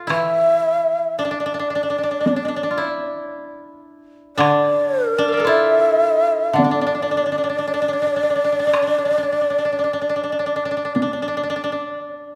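A breathy, vibrato-laden bamboo shakuhachi carries the melody in this solitary, austere fragment of traditional Japanese chamber music, its crisp, chiffy attack and rolled-off highs drifting over a rubato feel, while an up-front koto with a woody, fingerpicked tone plays a second line, a lower, mellow koto accompanies until 9.8 s, and a vintage, band-limited taiko ensemble struck with hard sticks sits quietly beneath, the whole recording set in a moderate concert hall reverb.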